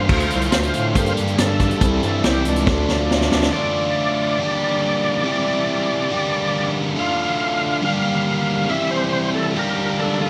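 A gritty, overdriven tonewheel organ with key click, slow rotary speaker, chorus vibrato and slapback echo leads this brooding, swaggering classic rock fragment over a biting, double-tracked electric guitar riff, joined at first by a mellow bass clarinet, a worn, very quiet upright piano and a vintage drum kit with a punchy kick and dark cymbals that closes its part with a fill ending at 3.5 seconds, before a dark octave-fuzz lead guitar with slapback echo slips in behind at 9.6 seconds.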